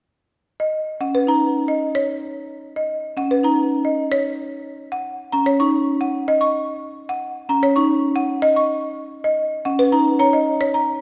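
A generous, wet hall reverb surrounds this short cut from a longer piece of classical minimalist pattern music, giving it the resonance of a church or concert hall. The mood is propulsive and bright, moving in a straight, even 4/4. At 0.6 seconds a folk marimba struck with hard mallets enters with the melody, its hardwood bars sounding dry, rustic and sharply percussive up front. A second marimba with medium hard mallets joins at 1.0 seconds, spinning arpeggios lower down on rosewood bars with a woody, boxy tone. The two keyboards sit close together in the mix, the folk instrument's crisp attack riding over the rounder, warm patterns beneath it until the passage closes.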